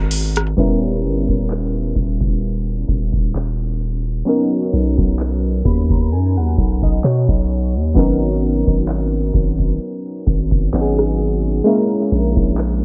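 Contemporary R&B at 65 BPM with a sensual, late-night mood, this excerpt pairs round, detuned keys carrying chorus, analog delay and a filter sweep from 0.6 seconds against a long, sine-like 808-style bass and a booming analog drum machine of deep kick, metallic hi-hat, handclaps and rim click, with a synth keys fill at 5.2 seconds, chords moving from G#m7 through Bmaj9 to A#m7b5, all set in an echo-heavy digital ambience.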